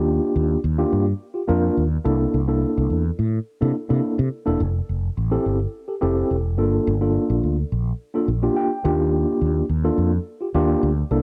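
A mellow tine electric piano sits up front, its clean, warm tone heard as if through built-in speakers, carrying the chords across this short passage cut from a longer early-eighties boogie funk piece. Beneath it, a fretless electric bass plays throughout, dark, round and punchy, with a direct, amped sound that keeps the groove danceable. The harmony moves from Ebmaj7 through C13, Fmaj7 and Gm7 before returning to Ebmaj7, giving the straight 4/4 feel a smooth, easy character. The electric piano slips in a brief fill between 8.3 and 9.1 seconds, just as the progression comes back around. Light reverb and a digital ambience frame the pair, and the cassette home recording lends the sound an intimate, homespun quality.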